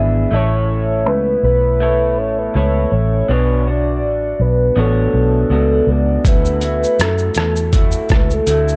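A lightly swung 81 BPM groove in 4/4 carries this sunny, laid-back bedroom-pop excerpt in D major, anchored by a round, foam-muted electric bass sitting up front, with a muffled trip-hop sampler kit of thumpy kick, rim click, hi-hat and shaker joining at 6.2 s, gritty with 12-bit sampler crunch. A slightly broken-up, lo-fi electric guitar through a small old amp supplies the accompaniment, bathed in lush chorus and warbly pitch drift, while a soft octave-layered synth lead with a wave-folded edge and vibrato sings the melody over chords moving from A to Bmadd9 to Dadd9. Light reverb and a dark, warm production give the whole piece a hazy glow.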